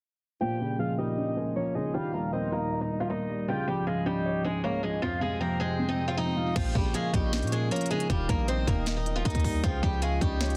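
At 156 BPM in a half-time 4/4 feel, this dark, hard-hitting trap passage in Bb dorian opens with a bright, boxy picked acoustic guitar carrying a swing-style melody up front, joined by a round, octave-layered synth lead with chorus, phaser and vibrato on a second line, a mellow concert grand piano and a warbling, nostalgic tape-like pad holding lo-fi chords in the background, over Bbm, Eb, Db and Fm beneath a filter sweep. A very quiet electronic swell at 5.5 seconds leads into the drop at 6.6 seconds, where a punchy 808-style bass with a noise layer arrives alongside a trap kit of hard-clipped kick, sharp snare, crisp hats and crash. The dense, heavily limited master keeps the sound dry and close.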